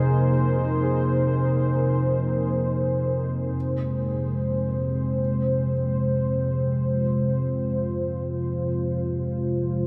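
A deep, rumbling drone, a dark analog pad and a distant piano all open this dark ambient piece together, with the drone sitting low and up front, its warbling, wave-folded tone slowly blooming and fading on long releases. The pad holds sustained F minor chords above it, a moody, detuned sawtooth sound with a sub octave beneath and a gentle chorus that thickens its edges. Far in the background, a clear, worn baby grand piano traces arpeggios on a single high note, its long sustain trailing into echoing delay. A huge, wet reverb with a long tail wraps the whole mix, giving the unsettling, ominous atmosphere a vast, cavernous space. The music shifts into a new section at 3.6 seconds while all three parts keep sounding through to 9.9 seconds, where this fragment, cut from a longer piece, ends.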